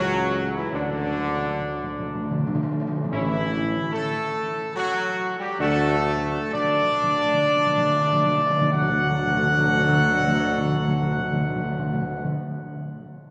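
Classical ceremonial fanfare in D major and 3/4, regal and majestic at a stately 50-77 BPM, where a dark, punchy trumpet section carries the melody up front over sustained chords from a bright trombone section with light vibrato and a vintage-toned French horn section set in the background, a soft-attack tuba anchoring the bass, and round soft-mallet timpani entering at 0.7 seconds with fills, the tempo slowing down from 1.9 to 8.7 seconds, all bathed in a wet cathedral reverb in this brief cut from a longer piece.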